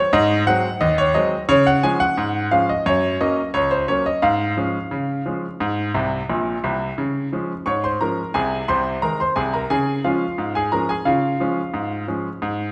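A generous recital-hall reverb surrounds a bright, up-front grand piano whose action noise stays audible, giving this playful, jaunty ragtime piece in Db major an intimate, present sound. The solo piano spans Bb1 to Db6 at 88 BPM in a straight 2/4, opening on an Ab7 and moving through Gb and Ab chords back home to Db. A piano fill at 5.9 seconds leads into a new section at 7.0 seconds, and the passage, cut from a longer piece, ends at 12.7 seconds.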